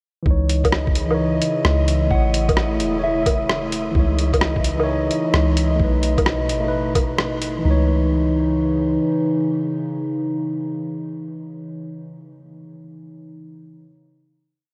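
Future garage at 130 BPM in C# minor, melancholic and wistful, built on a swung two-step groove from a muffled, thumpy electronic kick and a skittering lo-fi sampler kit of closed hi-hat, rim click and low woodblock, under a soft, round 808-style bass playing long gliding notes. A clean tine electric piano carries held chords with syncopated pushes, roughened by vintage 12-bit grit and analog delay with a filter sweep. A warbling, nostalgic tape-like pad joins it, while a breathy wind-like noise texture holding a high note and a brief gentle FM synth lead entering at 2.1 seconds sit in the background, with sidechain pumping on the piano, pad and bass; the dreamy mix is soaked in huge reverb, and at 7.6 seconds the groove gives way to a final C#madd9 chord that rings until about 11.3 seconds.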